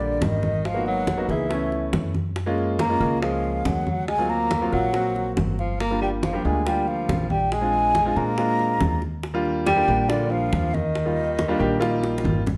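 A breathy, mellow concert flute carries the melody in this sophisticated, danceable Afro-Cuban jazz excerpt in Eb major at 140 BPM, its vibrato, crisp attack and rolled-off highs given a slapback echo. Beneath it a tenor saxophone plays a second line low in its range, with scooped notes, a smooth top and a jazz-style vibrato. An up-front concert grand piano with deep bass accompanies through harmonies such as Ebmaj7, Abm9, D7alt and Ebmaj9, while a woody, thumpy pizzicato upright bass on steel strings anchors the low end. Soft-handed, low-tuned congas with a thin skin sit in the background, and tight, high-tuned bongos struck with hard hands enter at 0.2 seconds, sounding close and dry. A moderate large-studio reverb places the ensemble in a shared space, and a drum fill at 12.0 seconds closes the passage.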